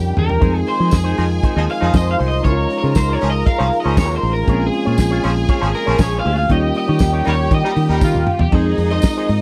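A bright, twangy electric guitar at the edge of break-up carries the melody through a lush chorus, entering at 0.2 seconds for a picked solo over this glamorous, danceable disco excerpt at 118 BPM in 4/4. Beneath it, a damped 1970s drum kit sits up front with a fat snare, tight kick and dark cymbals, opening with a fill and adding another around 8.0 seconds. A round, foam-muted fingered bass drives the low end, while the harmony cycles through Fm7, Dbmaj7, Bbm7 and Eb7. A clear, bowed string section with vibrato plays a second line, a classical-style French horn section holds sustained chords, and a distant, roomy pop horn section adds stabs. In the background, a scooped envelope-filtered guitar and a mellow, reedy electric piano with spring reverb fill out the accompaniment, and a jingly tambourine sounds from a large room. The whole mix has a dry, close 1970s studio character.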